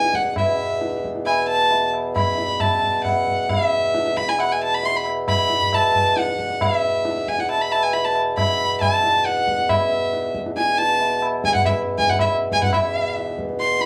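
A rich, reedy violin with light vibrato and a gut-string, period-style tone carries the melody up front in plate reverb, over a mellow, breathing harmonium drone and distant, high-tuned ringing tabla in this devotional, serene Hindustani classical excerpt in E major, set in 7/4 at 136 BPM and speeding up throughout its 13.9 seconds, with a new section arriving at 12.7 seconds.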